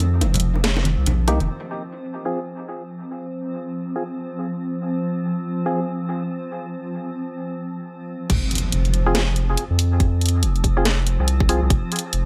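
A saturated, thick sub bass anchors this brooding, heavy deep dubstep cut in F minor at 141 BPM with a swung half-time feel, sounding beneath a blurred, evolving granular cloud pad that runs throughout, while a tape-warm garage kit with a cracking snare and bright saturated bongos and congas open alongside it, hollow organ stabs drift through dub echo, and at 8.3 seconds the drop lands with a tight layered kick, an electronic impact in the background and the bass and kit returning in an echo-heavy mix.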